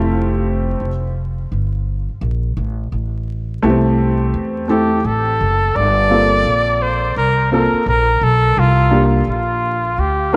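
Jazz-hop at 85 BPM with swung sixteenths in G dorian, this smoky, mellow fragment of a longer piece opens on an intimate, slightly detuned upright piano, its action noise audible, over a growly pizzicato upright bass, both up front and moving through Fmaj9, Am7, Gm11 and C9sus4. At 4.7 s a jazz-style trumpet enters as the solo voice, singing with vibrato and scooped notes through an analog delay. The whole dreamy mix is soaked in a lush hall reverb and laced with vinyl crackle.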